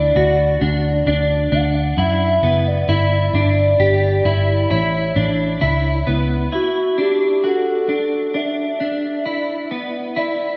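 A slow, straight 66 BPM pulse in 4/4 carries this dreamy, ethereal dream pop excerpt in D major, where a warbling, nostalgic detuned lead with vibrato sings over dark, clean picked electric guitar arpeggios wrapped in ensemble chorus and analog delay, while a round, foam-muted vintage bass holds the low end up front through D, G5 and A until it stops at 6.5 seconds and the chords fall away, leaving lead and guitar floating in a lush hall reverb.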